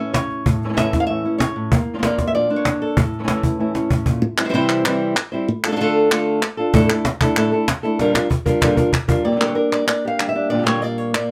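A fingerpicked flamenco guitar carries the intense, passionate melody up front at 191 BPM in this brief flamenco excerpt, joined by a second, thumb-plucked guitar punching out stabs, a woody, compressed and saturated cajon with faint snares that drops out after 4.1 seconds and returns with fills, and crisp palmas hand claps entering at 4.4 seconds, all in light reverb over chords moving from A through Bb and Dm to Asus4 and Bb6.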